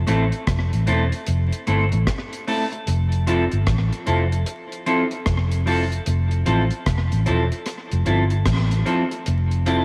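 A round, foam-muted vintage electric bass opens this sunny, uplifting roots reggae excerpt at 75 BPM in F major, joined at 0.1 seconds by an up-front, clean picked electric guitar bathed in lush chorus and tape echo and by a dry, smooth reggae drum kit with a tight kick, rim click and hi-hat under a rolled-off top and slapback echo, all resting on a single Fmaj7 chord with a swung sixteenth-note feel, light reverb, studio ambience and a layer of vinyl crackle.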